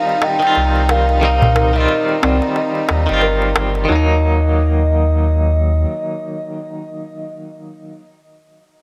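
Smoky, brooding trip hop at 90 BPM with a swung sixteenth feel, this short excerpt pairs a pure, breathy sine lead warbling through chorus, cassette tape and tape echo with a twangy, direct-recorded clean electric guitar under tremolo and echo, a bell-like celesta delaying arpeggios in the background, lush bowed strings holding chords until 3.9 seconds alongside a close, dry clay-shelled darbuka, and a round sub bass sitting up front from 0.6 seconds, all in a small room as the harmony shifts from Cm to Ebm.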